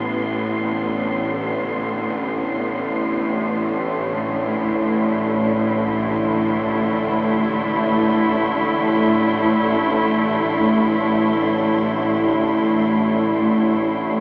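A dark, cavernous ambient drone in A minor at 53 BPM opens on a muted cello section holding veiled, con sordino chords bathed in shimmer reverb over a tense, sawtooth-edged bowed-like drone and a breathy, wind-like tuned noise texture, while very quiet bronze gamelan-type gongs play mellow arpeggios from 4.6 to 12.6 seconds, all set in a huge, wet space through a small-speaker sound in this fragment of a longer piece.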